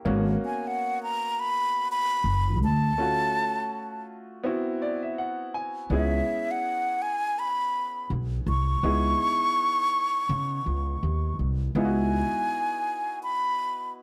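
Mellow and cool, this jazz-hop excerpt sways at 82 BPM in C# minor with a swung sixteenth-note feel, set in a dry, close 1970s-style studio sound with light reverb. A breathy silver concert flute carries the melody up front with vibrato and a hollow, tongued tone plus slapback echo, while a woody, growly pizzicato upright bass anchors the low end and a brilliant, polished upright piano comps softly underneath. A break arrives at 3.0 seconds, where the piano plays a fill from 4.4 to 5.9 seconds, and the harmony settles on C#m9 before shifting to a new section at 11.8 seconds.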